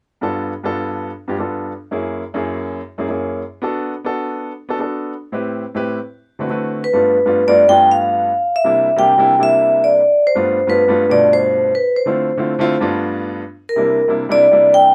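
Sophisticated and lively, this jazz excerpt moves at 140 BPM in a straight 4/4 feel, centred on G mixolydian. A warm baby grand piano opens the accompaniment at 0.2 s, its polished, present tone and short sustain carrying the harmony through changes such as G7, F#7, Bm7 and Am9 before a D13 sets up the next passage. At 6.8 s a vibraphone struck with medium hard mallets takes the melody, its metallic, ringing voice heard with the motor off and sitting prominently above the piano. Under the vibraphone, the harmony shifts between G9 and C9, with a brief Dm7 along the way. Both instruments sit up front in a rough home demo mix with a moderate touch of studio reverb, and the passage runs until it is cut off at 14.9 s.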